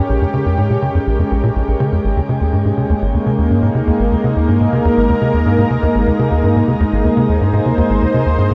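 Hypnotic and expansive, this short excerpt of ambient, sequencer-driven space music moves at 123 BPM in a straight 4/4, with a thick, detuned sawtooth unison pad holding sustained chords from Bbm7 to Absus2 over a tight, punchy sequencer bass riff with a plucky filtered attack and subtle chorus and delay, all bathed in a shimmering reverb with a 7.8-second tail within a dark, warm production.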